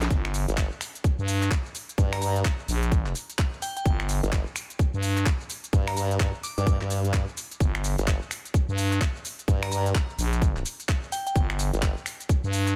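A thick, growling FM bass and a tape-warm garage kit of finger snaps, handclaps, crisp hi-hats, shaker and cracking snare open this bouncy, gritty bass house excerpt in G minor at 128 BPM with swung 16ths, soon joined by a tight, up-front electronic kick and a sawtooth formant-sweep wobble bass with chorus, both basses saturated and pumping to the sidechain, while a glassy FM synth bell with chorus, phaser and tape echo rings high above from 2.1 s and again at 9.6 s, all in a dry mix.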